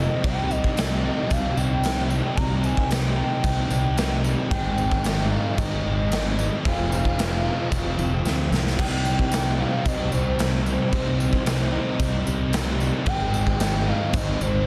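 A soft, round sine lead with chorus and analog delay leads this brooding, melancholic shoegaze and dream pop excerpt, gliding through a C5 to Bb5 melody over a C minor bed at 112 BPM in a straight 4/4. Beneath it, a thick fuzz guitar with lush chorus, a crunchy double-tracked overdriven guitar and a second overdriven guitar washed in reverse reverb grind out riffs from the background, while a twangy, direct-recorded clean guitar picks very quiet arpeggios. A growly fuzz fingered bass drives the low end, and a raw garage drum kit enters at 0.2 s up front, punchy and saturated, in a pumping stone room with a rolled-off top. A jingly tambourine sits low in the mix as the chords move from Cm to Abmaj7 and Fm7. A drum fill at 8.3 s carries the repeat of the progression at 8.8 s, and the whole sound is dense and heavily limited, steeped in studio reverb.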